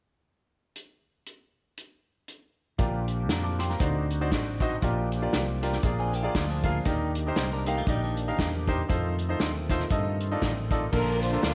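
A swung 4/4 drum groove with punchy kick and hi-hat opens this jubilant, hopeful slice of uptempo gospel alone, before a clear, up-front baby grand piano, a growly fingered electric bass and a reedy, lightly overdriven tonewheel organ with fast rotary shimmer and key click arrive at 2.8 seconds, a clean, picked electric guitar adds a brief second line in the background from 6.0 seconds, and a lush, woody string section takes the melody at 10.9 seconds as the chords settle home, all in a small, lightly reverberant room.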